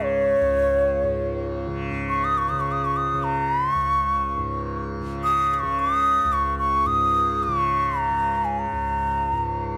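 A close, up-front bamboo bansuri sings an airy, tongued melody with vibrato spanning Db5 to Eb6 over a softly plucked tanpura drone whose buzzing shimmer sits lower in the mix, lending this serene, radiant Hindustani classical excerpt in free time a gentle, lightly reverberant glow.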